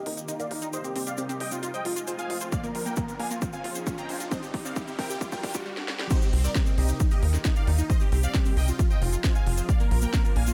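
Uplifting trance in C minor at 134 BPM, bittersweet and euphoric, where a huge, bright supersaw melody with phaser and dub echo and a lush, detuned unison pluck arpeggio both undergo filter sweeps through a build-up over a silky analog string pad, a nasal sawtooth sequencer bass sitting up front, a techno drum kit with cracking snare and smooth hats, a grainy tube shaker and a background riser, while an overdriven electronic kick enters at 2.5 s, drum fills push toward the drop at 6.1 s, and sidechain pumping drives the pad, supersaw, pluck, bass, hats and cymbals in a dry mix.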